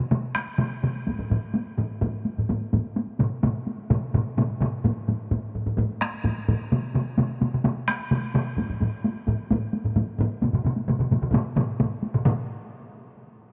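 Ceremonial and powerful, this short cut from a longer Japanese traditional taiko drum ensemble piece runs in a straight 4/4 at 129 BPM and gathers speed throughout. Solo taiko drums struck with hard sticks sit up front with a vintage, band-limited character, joined from the start by a close, hard-stick taiko ensemble and, from 1.1 seconds, a second ensemble played with heavy sticks in a small room. Light reverb and a dark production give the drumming a shadowed weight, with a brief new section arriving at 12.3 seconds.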